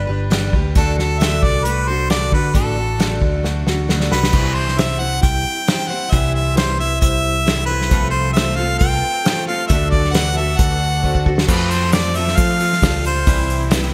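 Folk rock with a heartland rock drive moves at 134 BPM in a straight 4/4, carrying a warm, open-road mood through this short cut from a longer piece. A bright harmonica with light vibrato sits up front on the melody, backed from the start by a boxy parlour steel-string acoustic guitar and a round, amped electric bass. An unplugged drum kit played with bundle sticks in a small room joins at 0.3 seconds with a punchy kick, medium-tuned snare, hi-hat and crash, and its fills lead into the section changes at 4.3 and 11.5 seconds. A reedy electric piano with fast tremolo slips in behind at 4.3 seconds, and a very quiet symphonic string section adds smooth, bowed sustained chords from 7.9 seconds, while the harmony moves from G and D through C and F/C before settling on Cmaj7. A grainy, close tube shaker enters at 11.5 seconds, all within light reverb and a bright 1980s-style digital production.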